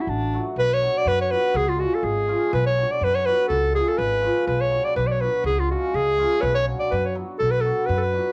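From the first moment of this fiery, virtuosic Balkan wedding-band excerpt in swung 2/4, a bright, close-miked clarinet plays the solo lead in classical style, up front over a shimmering, hammered cimbalom colored by cassette tape and plate reverb, while a woody, thumpy pizzicato upright bass stands out as Bm and C# chords alternate, captured in a home cassette recording with moderate studio reverb.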